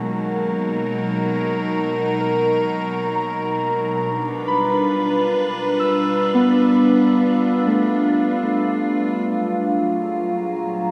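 Luminous and peaceful, this ambient fragment cut from a longer piece drifts at 68 BPM in 3/4, as a bright, morphing, detuned wavetable pad holds sustained chords up front with chorus and its own reverb, muted felt-like synth keys play soft, warbling arpeggios in a dark, vintage tone through chorus and tape echo, and a very quiet organ-like drone enters at 9.9 seconds, shortly after the harmony shifts from Bmaj7 and G7 to Gbmaj9, all inside a huge, wet reverb with a cassette tape character.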